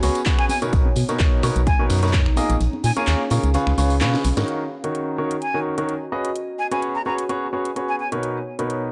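Energetic yet bittersweet, this piano house cut at 128 BPM in Eb minor rides a lightly swung groove, with a clear, polished baby grand riff and a hollow, organ-like FM bass up front, both pumping with sidechain, while a punchy electronic kick drops out at 2.6 seconds. A house kit of cracking snare, metallic hats, finger snaps and handclaps sits in studio reverb beside a very quiet big-room rock kit, saturated tambourine and congas in the background, and a detuned, warbling lo-fi pad that adds a nostalgic haze. A breathy jazz flute with vibrato and analog delay floats over chords such as Bmaj9 and Ebm7, a drum fill at 4.0 seconds leads into the second half, and the recording carries a dry, gritty cassette-tape character.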